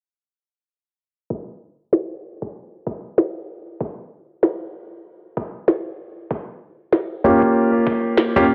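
Swaggering and gritty, this glitch hop excerpt moves at 96 BPM in 4/4 with a 16th-note swing. A compressed, sampler-style kick drum enters at 1.3 seconds with a thumpy, gritty tone, captured in a large room and thinned by high-pass filtering on both the drum and its room sound. An overdriven electronic snare follows at 1.9 seconds, small and up front. A concert grand piano arrives late, at 7.2 seconds, playing short stabs between Bb3 and G4 with a deep, polished tone, pumping from sidechain compression and trailed by tape echo. A filter sweep runs across the whole passage, and the harmony shifts from an unaccompanied groove to a Bbm6 chord, all set in light digital ambience under a low-pass filter.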